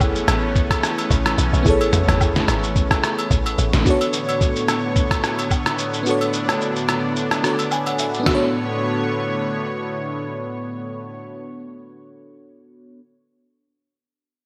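A 109 BPM amapiano groove in 4/4 swings its sixteenths lightly, driven by a lo-fi, sampler-style drum kit whose pitched-down, muffled sound, thumpy kick and fat snare sit up front with gated reverb, alongside rim click, shaker and toms. A tight, punchy FM log drum bass with a fast attack and a decaying tail opens the passage in B dorian but drops out at 3.8 seconds, while close, dry woodblock and agogo bells stay in the background. A lush, thick unison pad of detuned sawtooth voices warbles with vintage character, holding sustained chords through a chorus effect as the harmony moves from Amaj9 to Bm9. Over it, a crystalline FM electric piano sparkles with chorus and plays a fill from 7.4 to 8.3 seconds, lingering until 13.0 seconds. The soulful, deep mood is framed by a hall reverb and a bright 1980s-style digital production in this excerpt cut from a longer piece.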